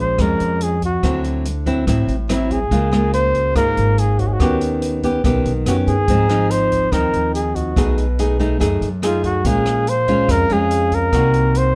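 A mellow flugelhorn with light vibrato and scooped notes sits up front over full-bodied fingerpicked nylon-string guitar, woody pizzicato upright bass and an open jazz drum kit of hi-hat, boomy kick and rim click in this smooth, wistful bossa nova excerpt, while a very quiet, polished baby grand piano adds touches until 7.9 seconds, all in a dark, dry production.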